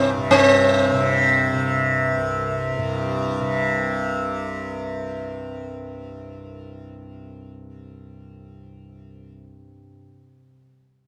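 A plectrum-plucked sitar leads this radiant, meditative Hindustani classical excerpt in free time, its warm, buzzing tone ringing with sympathetic strings as it carries the melody around C4. Beneath it, a softly plucked tanpura sustains a bright drone between C2 and C3, and both instruments shimmer up front in the mix. The sitar plays from the very start and falls silent at 3.7 seconds, leaving the tanpura to hold the drone alone until 10.5 seconds. Close, detailed microphones catch the acoustic grain of each instrument, set in a light reverb.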